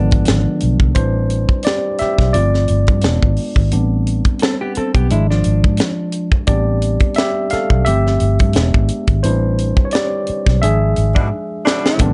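Smooth and introspective, this neo-soul R&B cut moves at 87 BPM in A minor with a lightly swung 16th feel, as a worn, slightly out-of-tune tine electric piano solos from 1.0 s over a round, foam-muted vintage fingered bass and a tight funk drum kit with a high-tuned snare, while a dark, compressed hollow-body jazz guitar adds a second line until 6.3 s, a band accent and drum fill arrive near the end, and a warm saxophone section with vibrato enters with stabs at 11.1 s, set in light reverb.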